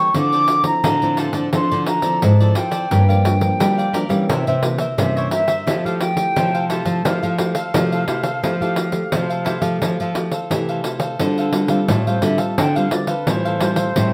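A pure, wooden baroque flute with soft-attack vibrato, distant and unsteady, carries a festive, sunny melody through this 87 BPM samba and choro passage in F major, backed by a bright, crisp picked cavaquinho, a warm, full-bodied fingerpicked classical nylon-string guitar, a second nylon-string guitar thumb-plucking the bass, and a jingly, close pandeiro played with soft hands, set in moderate studio reverb, before the flute takes a solo from 11.2 seconds over a Dm11 chord.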